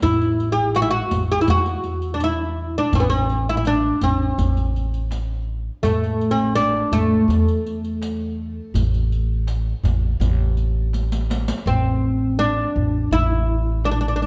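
Festive yet stately, this short cut from a longer Arabic maqam ensemble piece moves at 82 BPM in a straight 4/4, set in A maqam rast. The plectrum-plucked fretless oud carries the melody up front, its double strings giving a woody, deep voice that ranges from A3 to G#4-50c. Beneath it, the upright bass plays pizzicato on gut strings, thumpy and dark, also placed close to the listener. The darbuka sits in the background with a crisp, large metal-shell tone played with soft hands, while the riq adds band-limited, vintage-sounding dark jingles until 11.6 s. A drum fill from 10.9 s leads into a new section at 11.7 s, all framed by a moderate recital hall reverb and a dark, warm production.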